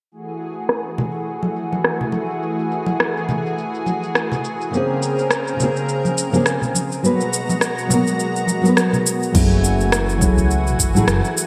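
This sunset chillout excerpt opens with a lush, detuned pad holding soft-attack minor ninth chords under chorus, alongside a smooth R&B drum kit with crash cymbal, rim click and shaker, its parts darkened by low-pass filtering and a filter sweep through the first 9.3 seconds. At 104 BPM in 4/4 with a gentle swing on the sixteenths, the mood is warm and wistful, and bright, band-limited congas with a vintage character join at 1.0 seconds. A thumb-plucked nylon-string guitar enters up front at 4.7 seconds, its fresh strings softened by a low-pass filter and trailed by delay as the chords move from Gbm9 through Bbm9 and Abm9. At 9.3 seconds the harmony returns to Gbm9, and a new section begins with a woody, growly pizzicato upright bass carrying tube saturation and a punchy, layered electronic kick, while a filter sweep now moves over the guitar. A wet, lush hall reverb and bright 1980s-style digital production give the whole piece a spacious sheen.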